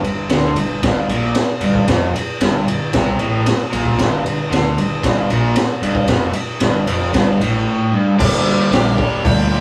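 A raw, gritty garage rock clip opens with a crunchy, double-tracked overdriven guitar riff up front, punchy fuzz-drenched picked bass and a saturated drum kit with a boomy kick, a high-tuned snare and a rolled-off top, all sitting on a straight 4/4 feel in a small rehearsal-room ambience. At 8.2 seconds a dark octave-fuzz lead guitar enters in the background with a short distorted melody. The drums stop at 9.4 seconds while the guitars and bass play on to the end of this brief cut from a longer piece.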